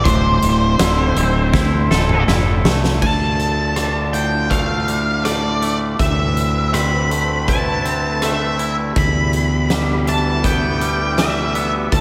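Post-rock at 81 BPM in D dorian, cinematic and melancholic, this twelve-second excerpt pairs an up-front, dark octave-fuzz lead guitar melody and a growly, overdriven fingered bass with clean, twangy electric guitar arpeggios in spring reverb and a bowed chamber string section holding sul tasto chords in the background. A huge arena drum kit with a fat snare and punchy kick enters at 0.1 seconds and plays a fill from 1.5 to 3.0 seconds, leading into a passage that moves from Dm through Amadd9/D to Em/D. The dreamy mix is soaked in plate reverb, with diffuse ambient delay trailing both guitars.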